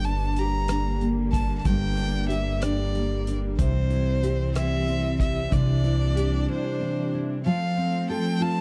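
This six-eight pop ballad, cut from a longer piece, has a tender, romantic mood and a straight 6/8 feel. A single bowed violin carries the melody with a rich, focused, slightly boxy tone and expressive vibrato, while a double-tracked nylon-string guitar fingerpicks a full-bodied classical accompaniment, its finger squeaks audible. Beneath them, a studio string section holds soft-attack sustained chords, played sul tasto with an intimate closeness. A pizzicato upright bass on gut strings sounds woody, dark and thumpy, sitting up front, and a soft-mallet drum kit adds hi-hat, rim click and a boomy kick with a big-room character. The bass and drums drop out by 6.4 seconds for a break, and the violin, guitar and strings carry on into a new section at 7.5 seconds, all within a dry, close 1970s-style studio sound with small room ambience.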